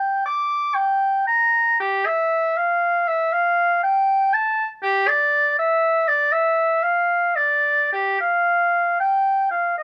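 Grave and solemn, this brief excerpt from a baroque-style classical fantasia features a single warm oboe with light vibrato, playing alone from 0.0 to 9.8 seconds between G4 and D6 in a rubato 3/4 at 59 BPM, set up front yet sounding distant and roomy within a dark production touched by light reverb.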